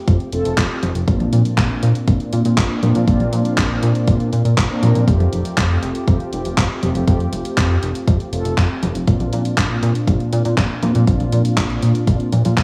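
Dark, detuned synth-brass stabs open this playful, romantic italo disco passage cut from a longer piece, sitting up front with chorus, shimmer reverb and tape echo over a glossy, saturated chorused synth bass, a punchy, tape-warm electronic kick, and a house kit of congas, handclaps and hi-hat carrying gated reverb, all moving in a straight 4/4 feel as the harmony alternates between Fadd9 and Bbadd9.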